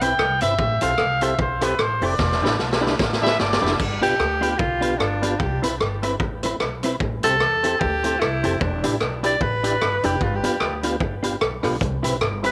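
A bright, up-front alto saxophone with vibrato takes over the melody at 4.0 seconds, after a punchy, vintage-toned trumpet solo with tape echo ends at 3.8 seconds, in this cheerful, bouncy ska excerpt at 150 BPM in G mixolydian with a swung feel, built over a gritty, saturated garage drum kit with a boomy kick that plays a fill from 2.2 seconds, a woody, growly pizzicato upright bass, a clean, fingered electric guitar in the background, and round, key-clicking tonewheel organ stabs through a fast rotary speaker, all in light reverb.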